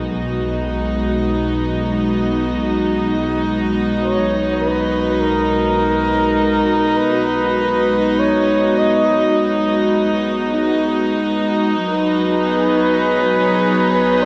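A clear, pure string section fades in on sustained B6 chords with a shimmer reverb, over a rich, distant double bass section holding a low B that fades out across the first 11.8 seconds of this serene ambient passage in free time, cut from a longer piece. At 4.0 seconds a mellow solo flugelhorn with light vibrato and a soft attack enters from afar, carrying a melody through shimmer reverb and delay. The harmony shifts to B69 at 11.8 seconds, and the whole sound sits in a huge ambient reverb with the worn, warbling pitch drift of old cassette tape.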